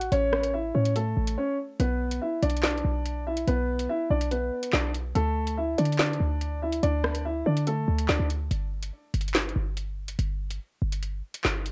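Menacing, dark drill hip hop at 143 BPM in a half-time feel, this excerpt sets a warm, deep-toned concert grand piano melody over an A, B minor and D5 progression until it stops at 8.3 seconds. Beneath it, a punchy, tight sine 808-style bass with a noise layer and a fast, decaying attack runs the full length, alongside an electronic drill kit of handclaps, metallic hi-hats, rim clicks and a woody snare, roughened by vintage 12-bit sampler grit and re-recorded in a large room. Breaks arrive at 1.4 seconds and again from 8.5 seconds, where the harmony drops away, all within a moderate booth ambience, with every part sitting up front.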